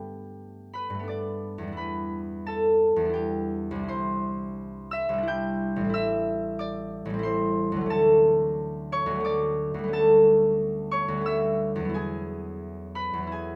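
A classical solo harp piece in 3/4, this short passage cut from a longer work drifts along with a dreamy, serene mood at a flexible, rubato pace of roughly 78-92 BPM. The concert harp carries everything alone, its warm acoustic tone fingerpicked and ringing, placed up front and spanning a broad compass from A1 up to G6. The harmony moves through colored chords, Gadd9, Em7, Cadd9 and Am7, before settling into D lydian at 7.9 s with Dmaj7 and A9/D, then arriving on Eadd9 at 11.9 s. The instrument is tuned slightly high, with A4 at 445 Hz. Light reverb surrounds the harp, letting its notes bloom and linger through the 13.6 seconds.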